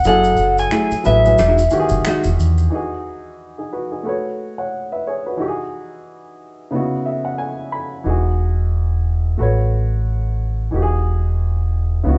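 Sensual and smooth, this neo-soul R&B excerpt in E major moves at 90 BPM with a swung sixteenth feel, opening with a twangy, slightly broken-up lo-fi electric guitar melody over maracas and finger snaps and a round, punchy dub bass, joined at 0.7 seconds by a dark, compressed hollow-body jazz guitar line. All of these drop away by 2.7 seconds to leave the up-front baby grand piano carrying lush ninth and eleventh chords alone, through its fill at 6.7 seconds, until the bass returns at 8.1 seconds, all in a live-room sound with light reverb.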